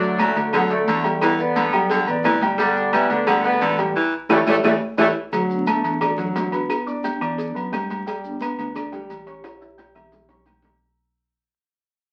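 Salsa at 175 BPM in D major, festive and danceable, heard as a short cut from a longer piece with the crackle and faint hum of a very old 78 rpm record and a small, wet room around it. A dark, punchy horn section carries the melody up front with light vibrato and octave doubling, while a raspy, gritty baritone saxophone plays a close second line until both drop out near 5.2 seconds. A dark, mellow concert grand piano accompanies through the D, Em7, G and A7 changes, over a round, fingered electric bass. The percussion is layered: ringing metal-shell timbales and agogo bells sit close, with soft-handed congas, woody claves and grainy maracas in the background and quiet, tight cowbell and bongos. A band accent and drum fill close the first phrase, then a smooth vibraphone with soft mallets and fast motor vibrato takes the melody from 5.5 seconds as the music fades out, with another drum fill at the end.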